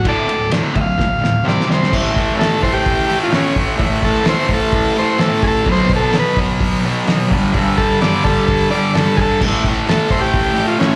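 Swaggering and rowdy, this short cut from a longer garage rock number moves in a straight 4/4 feel, captured live through a club's PA with light reverb hanging around the sound. A fuzz guitar sits up front, double-tracked and picked, driving a distorted low riff with a slapback echo on it. Over it, a buzzy, overdriven vintage combo organ carries the melody, its line wrapped in slapback and tape echo. The cloth-damped drum kit thuds along with a fat snare, tight kick and dark, muffled cymbals, its lo-fi, gritty tone rolled off at the top. A drum fill from 1.0 to 1.9 seconds leads into a new section, where the chords shift through A5, B5 and G5 before returning to A5 at 9.4 seconds.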